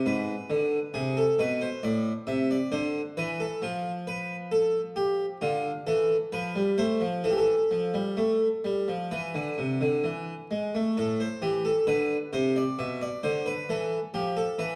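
A lone French-style harpsichord, placed up front and strung with two sets of strings, carries this baroque-style two-part invention, its plucked tone airy yet full. The mood is driving and solemn, set in a straight four-beat metre. Cut from a longer piece, it moves through a diminished opening chord into A minor, F with an added ninth, D minor and a suspended E before settling on a bare E fifth. At 11.0 seconds a new section begins, returning to A minor and closing on a half-diminished B chord that arrives at 12.8 seconds. A moderate recital hall reverb surrounds the instrument, and the production leans dark and warm.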